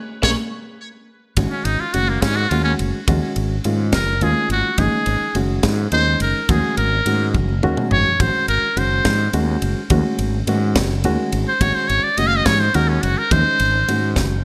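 Electric jazz fusion in a straight 6/8 at 70 BPM, bright and soaring, opening with a band accent on Bbm7 before a drum fill and a reedy, barky electric piano fill lead into an Ab7sus4 groove at 1.4 seconds. From there a buzzy, metal-muted trumpet with light vibrato and a smooth top takes an up-front solo, over a round, punchy fretless bass, the crisp drum kit's high-tuned snare and tight kick, and distant, very quiet congas, with another drum fill at 7.4 seconds. The polished 1980s-style digital production adds light small-room reverb, and the clip is cut from a longer piece.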